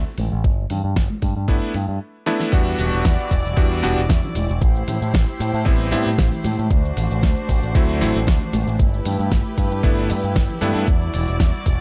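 Nu-disco with a sunny, feel-good mood, this excerpt runs at 115 BPM in a straight 4/4 in G major, opening on a G69 chord and moving through Em9, Am7 and D7. A picked electric bass with an envelope filter and tube saturation starts things at 0.0 s, bright and up front, joined almost at once by a pop drum kit with a fat snare, crisp hats, crash cymbal and shaker, plus a thumpy, sampler-style electronic kick re-recorded in a large room. High-tuned congas sit distant in the background. A cutting, clangy vintage electric grand piano with chorused unisons, long sustain, sidechain pumping and analog delay accompanies in the middle register from 1.5 s. After a drum fill at 2.3 s, the drop arrives at 2.5 s as an intimate chamber string section enters with bowed, sul tasto chords, light vibrato and its own sidechain pumping. The mix is dry, with little reverb, giving the groove a punchy, tape-warm immediacy.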